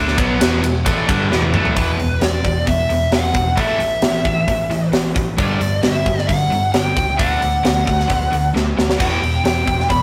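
This is a menacing, driving slice of hard rock in a straight four, taken from a longer piece and carried by a rough rehearsal-room sound with light reverb and tube saturation. Two picked, overdriven rhythm guitars sit in the background and play the riff from the start: a bright cranked stack guitar touched with spring reverb, and a warmer semi-hollow guitar with a hollow-body tone. Beneath them, a growly, punchy picked bass with an amped, overdriven edge holds down the low end. A tight metal drum kit sits up front, with bright cymbals, a high-tuned snare and a tight kick in an airy big-room sound, and it fills from 1.3 to 1.8 seconds and again near 8.5 seconds. At 1.8 seconds a dark, smooth, overdriven lead guitar steps forward with the melody over chords moving from E5 through A5 and G5 to D before the excerpt settles back on Em.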